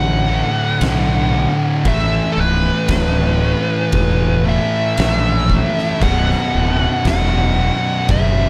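A slow, straight 4/4 pulse drives this ominous, heavy stoner and doom metal fragment, cut from a longer piece and moving from D to A5 at 1.9 seconds and on to Bm at 6.0 seconds. Up front, a growly, punchy fingered electric bass with overdrive and fuzz holds the low end, joined by a dark, picked fuzz lead guitar carrying the melody through wah, distortion and delay. Behind them sit two thick fuzz guitars playing the riff, one dark and the other warm, alongside a bright, tight distorted guitar that is double-tracked. An oversized low-tuned acoustic drum kit enters at 0.8 seconds in the background, its punchy kick, fat snare and dark crash and ride cymbals saturated and gritty, set in a bright stone room. The overall mix carries little reverb, leaving the fuzz-laden layers dry and close.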